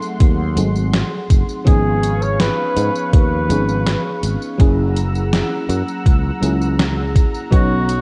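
A faded cassette-tape sheen with light reverb and a digital ambience colours this nostalgic vaporwave excerpt, which moves at 82 BPM in a straight 4/4. A mellow FM electric piano carries the accompaniment with a round, dark tone, a chorus and tape echo, while a thick, warbling unison pad holds sustained chords beneath it with its own chorus and a gritty vintage 12-bit sampler edge. From the start a detuned 8-bit drum machine adds hi-hat, snare and tambourine, bathed in gated reverb and re-recorded in a large room. From 0.2 seconds a thumpy electronic kick drum, also carrying that large-room sound, sits up front alongside a growly fretless electric bass with tube saturation. At 1.7 seconds a clear flugelhorn enters with the melody, its vibrato sounding distant and roomy through tape echo. The harmony drifts from G#7b9 to C#7/G# and then to F#7, keeping the mood hazy and wistful.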